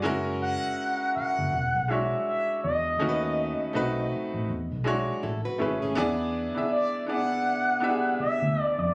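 Late-night and smooth, this brief R&B excerpt with a swung feel sets a clear, worn grand piano and a dark, foam-muted fingered electric bass under an expressive, sustained synth lead with chorus and vibrato, while a fingerpicked flamenco guitar slips in from 5.2 to 6.2 seconds, all heard as if caught on a phone in a club-like room with compression.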